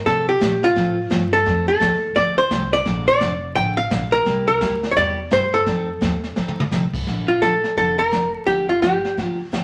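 Vinyl crackle and a wet studio reverb give this short cut from a longer western swing piece a vintage, roomy sound. At 171 BPM in 4/4 and in Bb major, it moves with a playful, swinging eighth-note feel. A clean, compressed hollow-body archtop guitar sits up front and carries the melody in a dark tone, while a bright, full-bodied steel-string acoustic guitar picks the accompaniment, finger squeaks and all. Underneath, a woody, thumpy pizzicato upright bass pairs with a jazz brush kit that sounds smooth and rolled-off, with a boomy kick, a high-tuned snare and dark cymbals. A drum fill at 6.4 s leads into a new section at 7.1 s, where the harmony settles on Bbmaj7 and then Gm7 after a run through F, Bbmaj7, C7 and F7.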